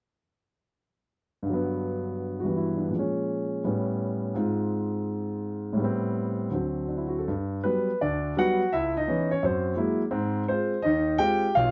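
A warm concert grand piano carries this short solo jazz passage on its own, entering at 1.4 seconds and playing until 11.7 seconds across a range from B1 to G5. The mood is relaxed, with a swung feel at 167 BPM in 4/4 and a rubato looseness, so the time breathes freely. The piano sits up front with a deep bass, an open character and long sustain, framed by light reverb in a dark production. Its harmony moves through rich jazz colors, opening on Gmaj7 and passing through Bbm7, A9, Ab6, Am9 and D7 before returning to Gmaj7 at 7.3 seconds for a second phase that visits C#m7 and F#9 and settles on Ab6. Cut from a longer piece, it offers a brief, warm glimpse of relaxed solo playing.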